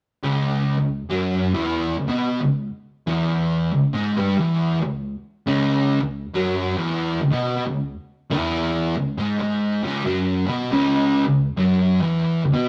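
A rough rehearsal-room recording with light reverb carries a brooding, heavy metal riff on an up-front, double-tracked fuzz guitar, picked and distorted in a warm low register over a swung feel and a C# minor chord, shifting to a new section at 10.7 seconds before this excerpt cuts off at 12.7 seconds.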